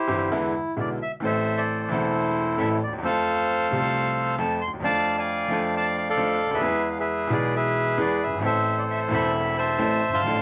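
Passionate and playful, this tango excerpt moves at 133 BPM in 4/4 with a rubato feel in A harmonic minor, cut from a longer piece and running through a chord progression from E7 to Am, F, Dm/F, E and back to Am. A reedy, boxy bandoneon carries the melody up front from the opening, while a bright baby grand piano enters at 0.1 seconds with brilliant, intimate accompaniment, its action noise audible and its sound colored by cassette tape. The whole take sits in a short, wet booth ambience with the character of a home cassette recording and vinyl crackle.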